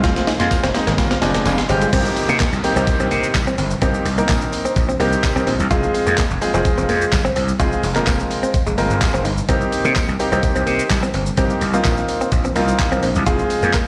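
A driving 4/4 dance-pop groove, confident and heard live through a venue's PA with recital-hall reverb, opens on a drum fill and build-up from a crisp 8-bit drum machine with thumpy kick, handclaps and shaker, a tight sawtooth synth arpeggio that stops at 1.9 seconds, and a very quiet riser and downlifter, all alongside growly overdriven slap bass, a clear concert grand piano with audible action noise, a scooped, clean direct electric guitar riff and a faint jingly tambourine. The piano adds a fill before the groove drops into a stretch over Fm and Cm7, where the bass and piano pump against the kick while the guitar and tambourine carry on.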